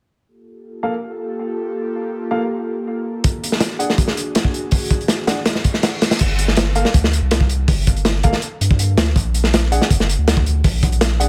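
This is an excerpt of nostalgic, raw drum and bass in the jungle style, moving at 162 BPM in G minor. It opens at 0.3 seconds with an airy, breathy pad holding soft, detuned chords through a chorus effect, starting on Gm9, and a warm grand piano soon adds stabs through a low-pass filter and dub echo. At 3.2 seconds a crunchy breakbeat kit arrives up front, its gritty, saturated sound rolled off at the top, with dark cymbals, a tight kick and a medium-tuned snare. A reverse cymbal sits in the background just before the drop, where the pad stops and a deep, thick sub bass takes over the low end at 6.2 seconds on a bare G5 chord. The piano and drums carry on with the bass to the close, and the whole mix is dry and close, with little reverb.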